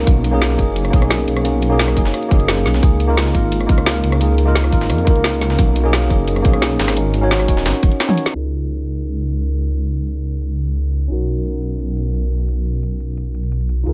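Liquid drum and bass at 174 BPM in Db mixolydian, uplifting and lush, this excerpt sets a worn, slightly out-of-tune tine electric piano with chorus and delay over a menacing, saturated detuned saw bass, both up front, while a tight electronic kick, a drum and bass kit with woody snare, bright hats, rim clicks and toms, and a gritty, pitched-up breakbeat kit tucked in the background drive the drop; the kick stops at 7.9 seconds, a drum fill leads into a band accent at 8.3 seconds as the breakbeat kit stops, and a filter sweep then runs over the electric piano to the end.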